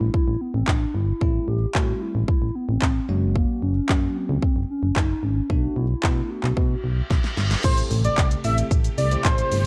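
A confident, energetic dance-pop groove at 112 BPM in a straight 4/4 drives this excerpt in A dorian, built on a punchy, layered electronic kit with a fat snare, handclaps, shaker, warm hats and crash, sitting up front alongside a solid, round FM bass whose fast-attack notes pump with the sidechain. Over this, a hollow, woody clarinet-like synth lead carries the melody with chorus, vibrato and a slapback echo, while a bell-like tine electric piano glints in the background through a phaser, also pumping. The harmony moves from Am7 to F# and Bm7, and a reverse cymbal rising in from 6.8 seconds, plus a short drum fill, sets up the drop at 7.6 seconds, landing with an electronic impact as the chords return to Am7. There a thick, nasal, detuned unison lead takes over the melody, bold and forward, and a vintage string machine of violas adds warbling sustained chords with ensemble chorus behind it. 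The production is dark and warm, with digital ambience around the parts, and the piece is cut from a longer track.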